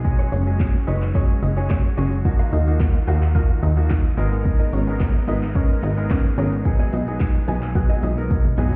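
A straight 4/4 deep house drum kit with a deep kick, fat snare and metallic hats drives this carefree, euphoric dance-pop fragment alongside a punchy, funky analog bass up front, a brilliant concert grand piano, a lush detuned pad and a soft, round pluck melody entering at 0.3 s, those four pumping with sidechain, while a clean, direct-recorded electric guitar riff with ensemble chorus sits in the background, the mix heard muffled as if through a wall, until a drum fill arrives at 8.3 s.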